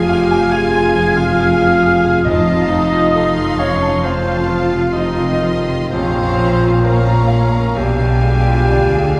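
Heard from further back on a reverberant scoring stage, this 9.2-second excerpt of a passionate, tragic Romantic movement for piano and orchestra unfolds in F minor at a rubato 59-70 BPM in 4/4, moving from Fm through F7 and Bbm to Bdim7. A clear, smooth grand piano with a vintage, short-sustained tone carries the melody, joined by a rich, expressive violin section in the background. Around them, airy flutes, a mellow clarinet, a cor anglais and a second bowed violin section weave secondary lines, while violas accompany, a distant French horn section holds sustained chords, a dark double bass section and a portamento-touched cello section anchor the bass, and very quiet timpani sound a lone F2 from 2.3 to 3.6 seconds.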